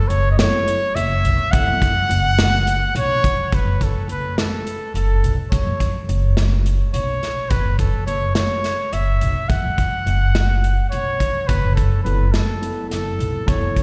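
A clear, close-miked trumpet opens this brooding, intricate progressive instrumental in 7/8, playing a classical-style solo melody with light vibrato, slapback echo and digital delay. A woody, growly pizzicato upright bass and a punchy, up-front acoustic drum kit with a medium-tuned snare join at once, while a gritty, overdriven tine electric piano through a combo amp adds bright accompaniment from 0.4 to 1.9 seconds and returns at 12.0 seconds. The music shifts to a new section at 3.5 seconds, and the whole band sounds like a live gig heard through the venue's PA, with small room ambience and recital hall reverb in this short cut from a longer piece.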